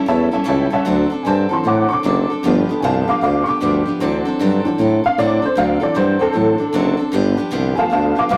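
A jangly, detuned honky-tonk upright piano takes the spotlight, opening with a brief fill at 0.1 seconds before launching into a woody, vintage-toned solo from 0.9 seconds in this rowdy, retro rockabilly excerpt swinging at 153 BPM. A punchy, present tuba carries the bass up front, while a bright, full-bodied picked steel-string acoustic guitar adds accompaniment with audible finger squeak. The rough rehearsal-room recording has tube saturation and a moderate small-room reverb, and the chords move through dominant sevenths from A7 to D7 and G7.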